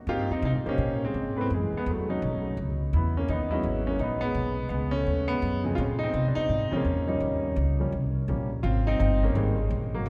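A relaxed swing in 4/4 carries this short jazz piano trio piece, cut from a longer performance, with a sophisticated mood. The grand piano carries the melody from 0.1 to 10.1 seconds, its tone warm and natural and placed up front. Beneath it, a pizzicato upright bass with steel strings supplies the bass line over the same span, sounding woody and dark and equally close. The harmony moves through rich extended chords, starting on Abmaj9, passing through Gbm9, B9, Emaj9, B13, Bbm9 and Eb7, and returning to Abmaj9 at 8.6 seconds. A lush church reverb with a long decay surrounds the duo, giving the recording the spacious air of a church or concert hall.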